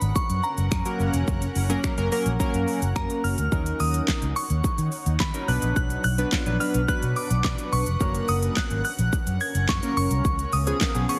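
A glassy FM bell melody with chorus, tremolo and delay floats over a blurred granular pad, a dark, round muted electric bass and a punchy, overdriven pop kit of kick, fat snare, crisp hi-hat, shaker, handclaps and finger snaps at 107 BPM, with a retro pulse-width polysynth joining at 0.9 s in this summery, euphoric dance-pop excerpt in F# major, its bass, pad and polysynth sidechain-pumped under a close, heavily compressed radio sound.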